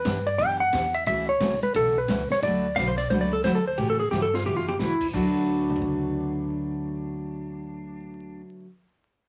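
Western swing country with a playful, swinging feel opens on a dark, clean lap steel melody over woody, growly pizzicato upright bass, a swinging big-band kit with a high-tuned snare and punchy kick, and bright, full-bodied picked acoustic guitar chords moving from Em7 through A6 to D6, before a warm, compressed pedal steel with volume swells takes up a second line at 2.8 seconds, a drum fill arrives at 4.1 seconds, and vinyl crackle sits over a wet studio ambience in this short cut from a longer piece.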